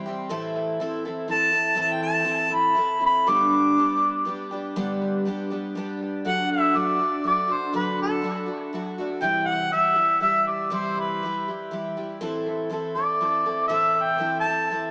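This rock excerpt moves at 121 BPM in a straight 3/4, with a jangly, open-road mood. A picked twelve-string acoustic guitar carries the accompaniment from the start, its shimmering, octave-doubled sound placed up front with an auditorium quality and a dub echo trailing behind it. At 1.3 seconds a mellow harmonica takes the melody, soloing through the opening section with light vibrato and scooped notes in a jazz style. The harmonica sits up front in the mix, yet it has a distant, roomy character and its own dub echo. The chords move from Am to G, and at 6.2 seconds the second section shifts to D and C before returning to Am. A wet spring reverb and an echo-heavy mix give the whole recording a small-speaker sound.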